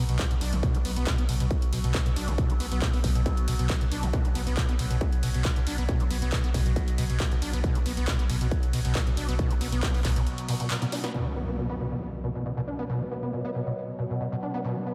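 A straight 4/4 pulse at 137 BPM drives this dark, industrial slice of peak-time techno in B minor, cut from a longer piece, with a distorted, layered electronic kick sitting up front from 0.2 to 10.1 seconds. A punchy analog drum machine adds overdriven snare, handclaps, hi-hat and ride cymbal, filtered and pumping. Low-end weight comes from a round sine sub bass holding B1, while a squelchy, gritty sawtooth acid riff with a resonant filter pluck runs between B2 and D4 through distortion, chorus and delay for the full length. Behind them, a sustained drone with moving overtones hovers between B2 and F#3, its slow attack and long release softened by chorus and reverb. The drop gives way to a brief break at 10.3 seconds and a drum fill near 10.8 seconds, then an electronic impact lands at 11.1 seconds as the acid riff and drone carry on, all bathed in a dreamy, lush hall reverb.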